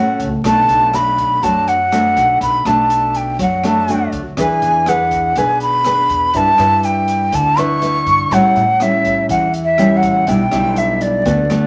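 A straight 4/4 bossa nova groove moves along at 122 BPM in this short, sophisticated and breezy cut from a longer piece. A breathy metal flute with vibrato carries the melody up front, its soft attack, lifted highs and unsteady tone floating between D5 and C#6. Beside it, a full-bodied, fingerpicked nylon-string guitar with fresh strings and a deep classical character supplies warm accompaniment through Bm7, E7, G6, A7 and G6/B. Underneath, a woody, dark pizzicato upright bass with gut strings gives a thumpy low end, while an acoustic jazz kit with hi-hat, rim click and a boomy kick joins at 0.2 seconds alongside a very quiet, grainy, bright egg shaker placed close. Moderate studio reverb and a layer of vinyl crackle surround the recording.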